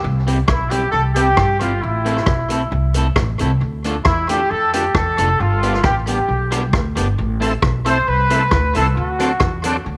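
A straight 4/4 ska groove at 134 BPM drives this upbeat, cheerful excerpt in C major, with a vintage drum kit's punchy kick, hi-hat and rim click sitting up front under tape echo, and a woody, thumpy pizzicato upright bass moving through C, Am, Dm, G, Am and D7. A twangy electric guitar at the edge of break-up adds accompaniment with subtle chorus, while a roomy horn section with light vibrato carries the melody, also touched by tape echo. At 7.4 s a smooth tonewheel organ slips in behind with background stabs through chorus vibrato and a slow rotary speaker, all set in a light studio reverb.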